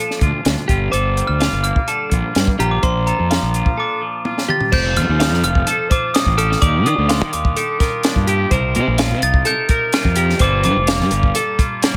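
Opening on a scooped, twangy electric guitar with spring reverb and a bright, compressed twelve-string electric guitar picking arpeggios through plate reverb, this wistful, intricate math rock and midwest emo piece in Bb major at 127 BPM quickly adds a dry, up-front compact cocktail drum kit with a high-tuned snare and dark cymbals, a growly, punchy fuzz bass played with the fingers through overdrive, and a ringing, bell-like glockenspiel melody struck with hard plastic mallets through analog delay, all moving over chords such as Bbmaj7 and Gm11 until a break from 3.8 seconds, capped by a drum fill from 4.3 to 4.7 seconds, leads into a passage built on F7, Ebmaj9 and Cm7.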